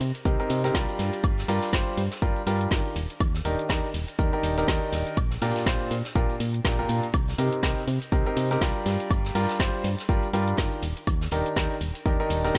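Studio ambience frames this bittersweet, energetic piano house excerpt at 122 BPM in C minor, swung on the sixteenths. A clear, up-front concert grand piano riff with deep bass and short sustain enters at 0.3 s with a punchy electronic kick, while a round, dark FM bass pumps with sidechain alongside the piano through Cm7, Gm7, Ebmaj7 and Bb6. A layered garage kit with a woody snare, metallic hats, shaker and woodblock sits over a very quiet, distant acoustic soul kit that adds roomy hi-hat and snare beneath.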